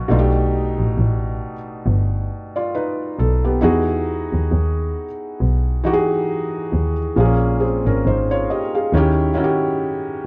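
Dark, cosy production with light small-room reverb frames this mellow lo-fi hip hop excerpt at 68 BPM with a gentle 16th-note swing, where an intimate, vintage-sounding felt-muted upright piano, softened further by a low-pass filter, plays accompaniment through B7alt, Emaj9, A#m7 and D#7b9 while a single bowed double bass sits up front with a nasal, reedy gut-string tone and light vibrato from 0.1 to 9.3 seconds.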